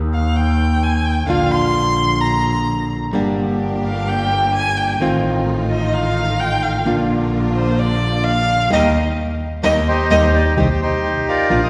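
A rubato 4/4 tango pulse at 129 BPM in Eb major carries this passionate, dramatic excerpt from a longer piece. A fingerpicked nylon-string guitar lays down a small acoustic accompaniment, while a clear, focused double bass, bowed by one player with vibrato, sits up front on the low line. A warm violin carries a solo line from the start until 10.6 seconds, bowed with vibrato and expressive portamento, sounding up front yet somehow distant. From 3.1 seconds a lush, intense studio string section adds bowed stabs with a smooth top, and the band lands an accent between 8.7 and 10.6 seconds as the chords move from Gm through F7/A and back to Eb. At 9.9 seconds a reedy, vintage-toned bandoneon with a band-limited character steps forward with the melody, carrying into a new passage over Cm, all set in the wet reverb of a church or concert hall.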